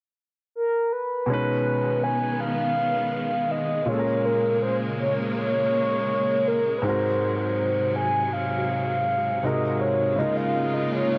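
A straight 4/4 pulse at 81 BPM carries this moody, late-night R&B fragment, cut from a longer piece and tuned slightly low to A4 = 438 Hz. A mellow, horn-like synth lead enters at 0.6 s, sitting up front with a round, sawtooth-based tone, a soft attack and sustained, vibrato-touched notes, thickened by chorus and trailed by dub echo. At 1.3 s a warm grand piano joins close behind with accompaniment, its own dub echo adding to the echo-heavy character. At the same moment a lush studio string section, bowed and even with a smooth top, spreads sustained chords underneath. The harmony drifts through B69, Bbm7 and Ab9 before settling on Db69, all bathed in a moderate plate reverb.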